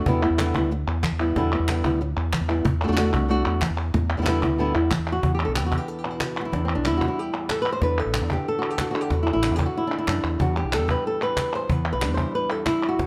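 Flamenco with a dramatic, fiery mood, this short excerpt, cut from a longer piece, moves at a brisk pace in a straight four. A fingerpicked flamenco guitar carries the melody up front, its acoustic tone warm as it ranges from low to high across the fretboard. Beneath it, a fingered electric bass sits equally forward, dark, round and direct, anchoring the harmony as it shifts between Em7 and D. A woody cajon with faint snares and hard-handed strokes stays in the background, joined from 0.2 seconds by crisp palmas hand claps, both sounding as if played in a small room. Light reverb adds a touch of space, and a new section begins at 5.2 seconds. The D chord returns at 7.8 seconds before the music settles back on Em7 at 10.4 seconds.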